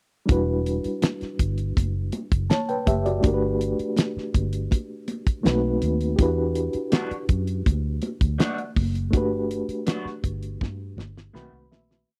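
A silky, smooth 1970s-style soul verse in E minor at 81 BPM opens at 0.3 s with a reedy, slightly out-of-tune electric piano holding rootless chords through a fast tremolo, a round, foam-muted fingered bass line with ghost notes and chromatic approach notes, a dry, damped drum kit with a fat snare and tight kick, and bright, high-tuned congas slapping on two and sounding open tones on four in the background. At 6.9 s a dark, slightly broken-up electric guitar through a small old amp adds short phaser-tinged chops on the backbeat, while the chords move through Em9, Gmaj7 and B7b9. The close studio sound fades out from 9.1 s as the drums and the electric piano play short fills to the end.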